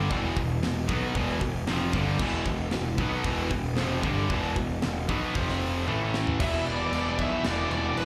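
Heavy and epic, this heavy metal passage from a longer piece sounds like a live club gig heard through the venue's PA, with three distorted guitars grinding out the riff in the background: a high-gain one with slapback echo, a tight one, and a very quiet, double-tracked sludgy one. Up front, a growly, punchy fuzz bass drives the low end alongside a polished acoustic drum kit with bright cymbals and a tight kick. A drum fill at 5.9 seconds leads into a half-time feel at 6.4 seconds, where a dark, bluesy overdriven lead guitar enters with a high melody.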